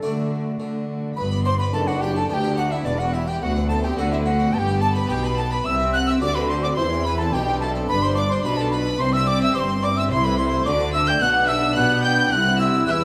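Lively and brilliant, this baroque-style concerto movement in G major moves at 108 BPM in 4/4, with an airy, crisp-attacked wooden flute leading the melody alongside a gut-string violin section, while a second violin section carries a smooth second line, a dark viola section and a full Italian-style harpsichord fill in the accompaniment, a nasal cello section holds the bass, a double bass section joins it at 1.2 s as the chords move through G, C and G7, and a recital hall reverb surrounds the ensemble in this section cut from a longer piece.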